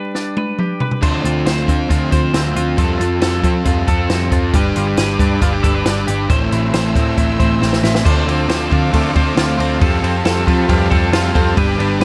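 A bright, twangy twelve-string electric guitar sits up front from the opening, picking compressed, clean arpeggios in this wistful, bittersweet stretch of jangly indie pop at 136 BPM in D dorian, cut from a longer piece. A dry, compact cocktail drum kit with a punchy kick, high-tuned snare and dark cymbals plays a short fill during the opening break. At 1.0 seconds a crunchy overdriven guitar and a round, foam-muted electric bass join as the chords move through Dm7, Fadd9, G and Am. A very quiet, lush string section adds sustained bowed chords with vibrato and portamento from 4.5 seconds. At 8.1 seconds a buzzy vintage combo organ enters in the background, later adding a short fill. The mix is close and dry, with a layer of vinyl crackle over it all.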